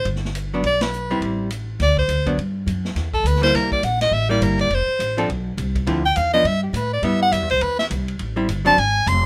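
Small-group swing and bop jazz with a relaxed, warm mood, heard in a short section cut from a longer piece, where a bright, close-miked soprano saxophone carries the melody with vibrato and moves into a solo at 2.4 seconds. Up front beside it, a woody pizzicato upright bass anchors the low end, while a clean, hollow-body archtop guitar supplies picked accompaniment from 0.5 seconds. Further back, a vintage acoustic drum kit with dark cymbals and a punchy kick keeps a swinging time, with a band accent at 0.8 seconds and light reverb around the group.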